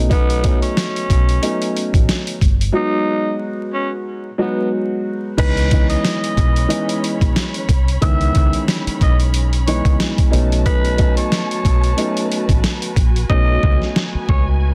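A growling tenor saxophone carries the melody in a raspy, breathy jazz style, its soft attack shaded by filtering and a digital delay, over this tough, moody boom-bap hip-hop cut in C# minor at 91 BPM with a swung 16th feel. Beneath it, a dark upright piano comps up front with a woody, vintage tone, its action noise audible through a cassette-tape coloring and filtering. A deep dub fingered electric bass sits round and punchy, foam-muted and dark. The sampler-style drum kit is compressed, pitched down and gritty, with a thumpy kick, a medium-tuned snare, hi-hat and crash, and a break arrives from 2.7 to 5.4 seconds. At 5.4 seconds a lush studio string section enters with bowed, sustained chords full of vibrato and portamento as the harmony moves from B7 and G#m7 to C#m9, and the hi-hats fall silent from 13.3 seconds in this excerpt. The small room, dense, heavily limited modern master and vinyl crackle give the whole track a moody character.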